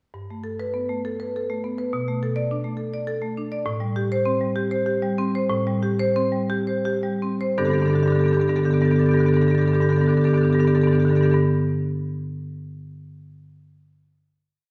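Contemporary classical miniature for solo marimba in G major: a flowing, warm piece in a rubato 6/8 at around 54-69 BPM per dotted quarter, where the up-front marimba, struck with medium hard mallets on woody padauk bars, spins bright, airy rippling figuration through Gadd9, Bm7 and Am7, slows from 2.8 to 7.6 seconds, and settles on a final Gadd9 chord that rings until 11.4 seconds in the lush reverb of a church or concert hall.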